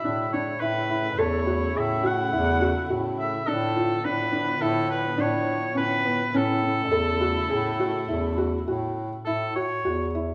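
A wet recital-hall reverb surrounds this short cut from a longer contemporary chamber piece, which moves at 104 BPM in an uneven 5/4 with a straight feel in A major, tuned slightly sharp at A4 = 441 Hz. An oboe carries the melody with a light vibrato and a classical poise, sitting up front yet carrying a roomy, distant air. Beneath it, a felt-muted upright piano plays mellow, intimate arpeggios in the middle register, its action noise audible. A warm bass clarinet anchors the low end, and a dark studio string section holds soft-attack sul tasto chords with light vibrato until 9.2 seconds. The harmony moves between A, E7/A and Dm6/A over the pedal A, giving the music a restless, shimmering mood as it shifts into a new section at 9.3 seconds, just before the cut.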